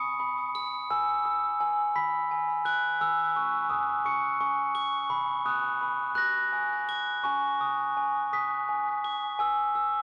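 This children's lullaby in B major drifts along in a rubato 6/8 at about 57 dotted-quarter beats per minute, its tender, gentle mood carried entirely by a solo glockenspiel played with rubber mallets, ringing high between G#5 and B7. The bell-like tone is mellow and airy, placed up front and trailed by tape echo inside light reverb and a dark production. Across this short excerpt the harmony moves through Badd9, E, C#m, B, F#add9 and G#m before settling on a rootless C#m/G# at 9.4 seconds.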